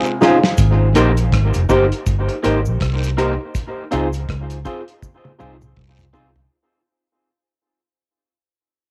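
A home cassette recording in a moderate room, this sweet, tender lovers rock reggae fragment fades out from 0.6 seconds, opening on a drum fill from the cloth-damped, thuddy kit, whose tight kick, medium-tuned snare, rim clicks, hi-hat and toms carry analog delay and a rolled-off top. A bright, twangy, slightly broken-up guitar stabs through a small old amp, while a worn, slightly out-of-tune tine electric piano adds lightly overdriven, chorused chords with analog delay and plate reverb, moving from Dbmaj7 to Abmaj9 and back. Close, dry cabasa and guiro sit low in the mix, and a dark, round, foam-muted fingered bass enters up front at 0.6 seconds, with another drum fill arriving at 5.0 seconds.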